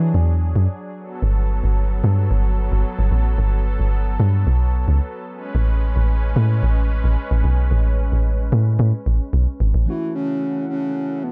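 A smooth, warbling vintage pad drifting in lush chorus and a deep, round log drum bass sitting up front open this late-night, soulful amapiano fragment at 111 BPM, moving through E9, Gmaj9 and Amaj9 until the bass stops at 9.9 seconds and a breathy, flute-like synth lead with tape echo and vibrato enters together with a clean tine electric piano on F#m7, all set in a dark digital ambience.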